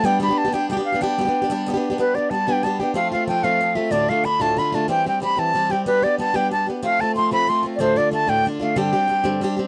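Celtic folk jig in 6/8 at 124 BPM, rollicking and cheerful, set in G mixolydian over a chord cycle of G, F, Dm and C/E that closes on Gsus4. A bright wooden flute carries the tongued, expressive melody with an airy, straight tone, while a picked, plugged-in swing-style acoustic guitar accompanies with a boxy sound and audible finger squeak, both parts up front from the start. The dry, close studio sound has a 1970s character, and the clip is cut from a longer piece, with the flute stopping at 9.4 seconds just before the guitar.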